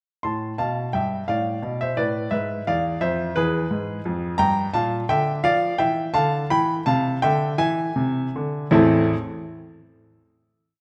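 A classical-period piano sonatina in A minor, elegant and restless, moves in a slow 6/8 at about 53-58 dotted-quarter beats per minute, its brief single section passing through harmonies such as Gm13 and Cmaj13 before settling on a closing A minor chord at 8.7 seconds. A solo baby grand, clear, intimate and up front, carries the tune in thirds over a walking bass, spanning A1 to C6 with short sustain and audible action noise. A wet recital-hall reverb lets the final chord ring on after the playing ends at 9.1 seconds.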